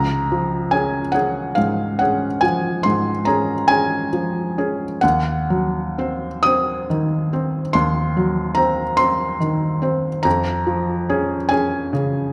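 Tender and nostalgic, this brief excerpt from a romantic classical nocturne unfolds in Db major at a slow, rubato 47 BPM in 12/8. A lone felt-muted upright piano sits up front, its soft, mellow tone carrying short sustain, a thin layer of felt and audible action noise that lends an intimate closeness, while spanning Db2 to Eb6. The harmony moves from Db to Cdim/Eb at 5.0 seconds and settles on Db/F at 10.3 seconds, all bathed in the lingering reverb of a recital hall.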